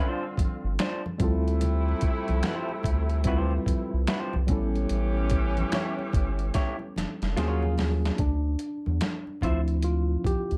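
Up front, a round analog bass with a deep, nasal tone anchors this sultry, late-night neo-soul excerpt at 73 BPM in D dorian, alongside a gritty, thumpy boom bap sampler-style drum kit with finger snaps and a fill from 6.5 to 8.2 seconds, very quiet congas, a slightly broken-up lo-fi electric guitar line, distant stabs from a loose horn section with vibrato, and a worn, slightly out-of-tune tine electric piano that takes a solo at 8.2 seconds over a Dm9 chord.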